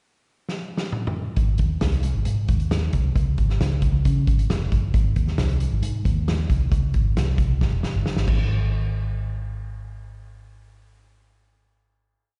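Danceable and warm, this short uptempo 1960s-style soul piece opens with a drum fill on a dark, smooth vintage kit with a tight kick and medium-tuned snare that sets up a backbeat soul groove, joined at 1.4 seconds by a round, foam-muted fingered electric bass playing a melodic, syncopated line, both up front in a live sound heard through a venue's PA with recital hall reverb, until the drums drop out after a closing fill and the bass carries the final hit to 12.1 seconds.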